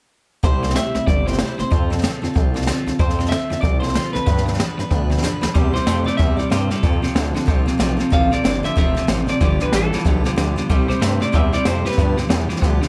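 A gritty, nasal synth bass drives this rollicking, upbeat rockabilly excerpt in swung 4/4 alongside an up-front brushed drum kit with a high-tuned snare and boomy kick, a twangy lo-fi electric guitar melody with tape echo over a bright riffing electric guitar bathed in spring reverb, and a full-bodied picked acoustic guitar in the background, moving through C, F and G7 with a drum fill at 5.2 seconds leading into the second section.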